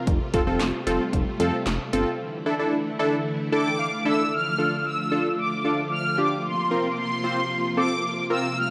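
A straight 4/4 pulse at 113 BPM drives this cool synth-pop excerpt in D minor, where a punchy, tape-warm analog drum machine and a glossy chorused pulse-wave synth bass play only until about 2 seconds, leaving detuned sawtooth analog keys up front over phased, ensemble-chorused string-machine violas, with the keys adding a fill at 3.3 seconds before a dark, brassy synth lead with vibrato, phaser and a diffuse ambient delay carries the melody from 3.5 seconds as the chords move from Fadd9 through Asus4 and Dm to Bbsus2 inside a dreamy, reverb-soaked mix.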